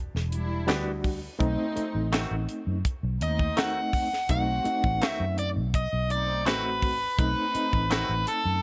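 Soul blues in a straight-eighth 4/4 groove at 83 BPM, this soulful, smoky cut moves from Em7 to B7b9 as a round, foam-muted fingered bass and a tight funk kit with a high-tuned snare sit up front, a gritty electric piano shimmers with fast tremolo through a combo amp, a twangy, direct-recorded clean guitar adds compressed stabs, a dark sul tasto string section holds soft-attack chords in the background, and a biting overdriven lead guitar enters with the melody at 3.2 seconds, all in a small room.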